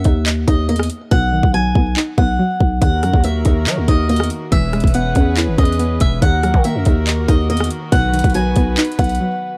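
A dark, dry mix with little reverb frames this brooding, melancholic trap cut, taken from a longer hip hop piece and set in a half-time 4/4 feel at 141 BPM in Eb phrygian. A boxy, picked acoustic guitar carries the melody with a swing lilt, while a twangy, string-like resonator pluck, bright and full-bodied with a sawtooth edge, a noise layer, a filter sweep and chorus, fills out the accompaniment. Up front sit a growling, buzzy 808-style bass with a fast attack and decay, and an electronic trap kit of hard-clipped kick, metallic hi-hats, handclaps and rim clicks with a tape-warm character. The hi-hats are muted from 1.1 s until 2.8 s, when a rich studio string section enters underneath, sustaining soft-attacked, floating bowed chords with a pure sul tasto tone. The harmony circles Ebm, B and E6, and the bass and drums cut out for a brief break at 9.2 s.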